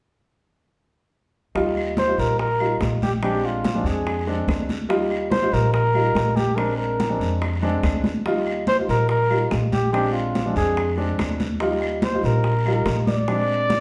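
A straight four-beat Afro-Cuban jazz groove opens at 1.6 seconds with ringing, high-tuned congas played with soft hands, close, dry, raspy guiro, and low, round bongos tucked in the background, while distant, woody claves join at 1.8 seconds. Pizzicato upright bass with steel strings and an up-front baby grand piano, natural and short in sustain, cycle between Ebadd9 and Bb7 beneath a mellow, punchy solo trumpet that enters at 2.0 seconds with scooped notes and a smooth, forceful top. The band plays live in one large studio room with a lush reverb, giving this lively, danceable fragment of a longer piece a shared sense of space.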